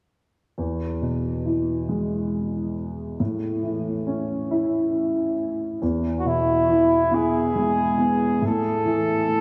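A grand piano, up front and treated with a lush chorus, opens this tender, swaying pop excerpt at 0.6 s, accompanying in the low and middle register at a slow 46 BPM in 6/8 over chords of E and A. At 6.2 s a solo flugelhorn takes the melody, its scooped notes sounding roomy and trailed by a diffuse ambient delay. The whole mix is dreamy and soaked in a huge, long-tailed reverb.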